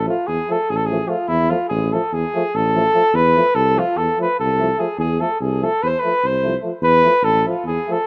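This short fragment of a longer piece has the loose, rough feel of a home demo, touched by a light studio reverb. It is Balkan brass band folk in a straight 9/8, fiery and restless in mood. A warm flugelhorn carries the melody up front with a light vibrato, its tone distant and roomy, playing in a classical style between E4 and C5. A punchy tuba anchors the bass, also up front with a gentle vibrato, and drops out at 7.8 seconds. In the background, a clear, vintage-sounding euphonium stays on A3 while a mellow trombone with a smooth top and slight vibrato plays on F3, the two filling out the harmony. The chords move from Fmaj7/A to F at 3.1 seconds and settle on Fmaj7#11 at 6.8 seconds.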